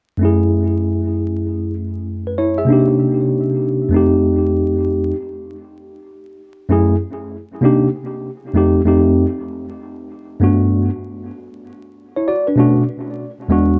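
A worn, slightly out-of-tune tine electric piano plays alone and up front from 0.2 to 13.8 seconds in this smoky, mellow hip hop excerpt, its swung chords drifting from F#m7 through Cm7 and F9 before opening onto Gmaj9 and Bm7, with tape echo on the keys, a short wet studio reverb, and vinyl crackle across a dark production.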